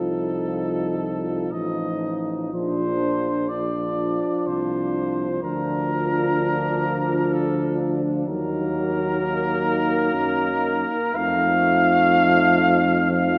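Rubato and unevenly paced in a slow 3/4 at 63 BPM, this tender, lyrical, hymn-like classical passage for brass band in Bb major, cut from a longer piece, places a warm, vibrato-rich flugelhorn melody up front yet distant and roomy, with a mellow, tight French horn section on a second line in the background, a bright, tight trombone section and a gently vibrato euphonium in the background as accompaniment, and a roomy tuba holding the bass, the ensemble bathed in a wet concert hall reverb as the harmony turns to Ebm at 8.3 seconds before closing on F7 at 11.2 seconds.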